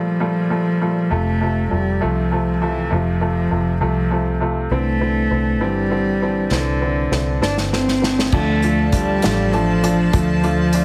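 In a six-eight metre, this dramatic, melancholic pop ballad opens with an intimate, airy sul tasto cello melody touched by analog delay over a bright, woody, slightly detuned upright piano, joined at 1.1 seconds by a dark, round, foam-muted electric bass, while an acoustic drum kit played with bundle sticks enters on a fill at 6.5 seconds, and from 8.3 seconds floating bowed strings and very quiet, full-bodied picked steel-string guitar arpeggios arrive, set in light reverb with a heavily compressed, radio-like sound.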